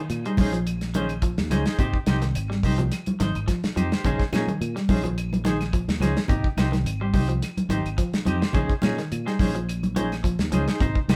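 A slightly broken-up, twangy electric guitar opens this driving, joyful afrobeat cut with picked arpeggios at 106 BPM, lightly swung on the sixteenths over a Bbm11 to Abmaj7 vamp. Almost at once a round, punchy fingered bass, an up-front, dry 70s drum kit with a tight kick and rolled-off top, and woody claves in the background settle in. From 0.3 seconds a clean, hollow-bodied semi-hollow guitar adds tremolo-tinged stabs, and bright, hard-handed congas follow in the background a moment later, all captured as a band playing live in one room with light reverb.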